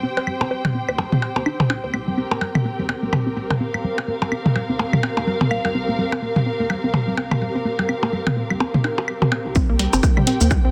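A dense, heavily limited mix with moderate studio reverb frames this cool, sparse minimal techno fragment in C minor at 126 BPM with a 58% sixteenth swing: a hollow, detuned square pluck riff with chorus and tape echo opens alongside a veiled, con sordino string section, joined at 0.4 seconds by a rubbery, dark square bass in the background, all three pumping against the sidechain; up-front electronic blips, claves and toms carry tape echo; a soft FM bell chimes a single F5 at 5.5 seconds; and the drop at 9.6 seconds brings a punchy, overdriven kick with metallic analog cabasa and hi-hat.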